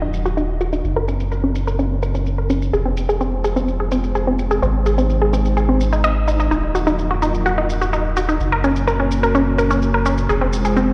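A barely audible sub drop and impact open this melancholic, dramatic melodic techno excerpt at 127 BPM, as a moody, detuned sawtooth pad with chorus holds dark sustained chords over a round, deep analog bass sitting up front. A bright, warbling unison pluck with delay spins punchy arpeggios, and both it and the pad carry a filter sweep throughout, while a faint, tape-warm electronic shaker enters at 0.1 s beneath them. The harmony cycles through Ebmadd9, Gb, Fm and Ab, and the whole mix is bathed in a huge ambient reverb, heard as if played on a big sound system in a bare room.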